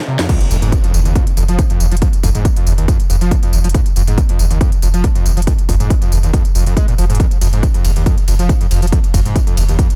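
Driving peak-time techno at 139 BPM in F minor, industrial and relentless, drops in at 0.3 s after a background noise sweep, landing with an impact, with a heavy, up-front electronic kick, a techno kit of cracking snare, smooth hats, ride, crash and tambourine in a small room, a deep, round sine sub bass thickened by tube saturation and sidechain pumping, and a screaming, squelchy sawtooth acid riff, resonant and distorted, with a filter sweep, ensemble chorus, sidechain ducking and digital delay.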